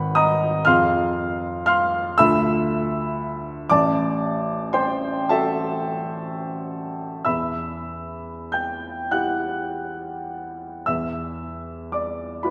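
Nocturnal and hazy, this short passage, cut from a longer piece, is impressionist classical music for solo piano, moving with a loose, rubato sway in 6/8. A baby grand piano carries everything alone from 0.0 to 12.5 seconds, sounding open and up front, its notes ringing with long sustain across a range from deep G#1 up to G6. Its harmony drifts through shadowy shifts, from G#m7 through Fm and Dm to an Am6, before settling on E minor at 7.2 seconds. At 10.9 seconds the chords fall away as a brief new section begins, and the passage is cut off shortly after. A wet concert hall reverb with a 2.1-second tail surrounds the instrument, giving it the spacious resonance of a church or hall.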